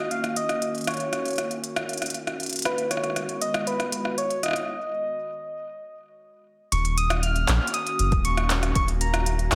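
IDM with a melancholic, glitchy mood, where a gentle, keys-like FM lead with chorus and tape echo carries the melody over a warbling, nostalgic lo-fi pad with phaser, 12-bit grit and sidechain pumping, an overdriven electronic kit of handclaps, smooth hats and rim clicks re-recorded in a large room, a round, dark analog bass entering at 6.7 seconds after a break, and a brief overdriven deep kick at 8.1 seconds, all within light digital ambience.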